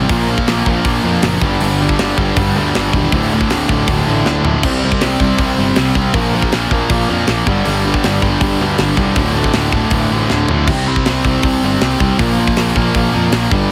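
A bright, overdriven electric guitar sits up front, hammering out a picked riff over a cycle of Bb5, G5, D5 and C5 power chords in this aggressive, urgent punk rock excerpt. Behind it, a darker, raw garage guitar plays a riff of its own in the background before dropping out at 10.7 s, while a very quiet, double-tracked fuzz guitar adds a distorted layer underneath. A growly, overdriven fuzz bass, picked and carrying both direct and amped tone, drives the low end. The tight metal drum kit sounds acoustic and close in a studio room, with bright cymbals, a medium-tuned snare, a tight kick, toms and splash, and it breaks into fills around 4.3 s and again just before the section repeats. The whole mix is heavily compressed into a loud, radio-ready sound with only a light touch of reverb.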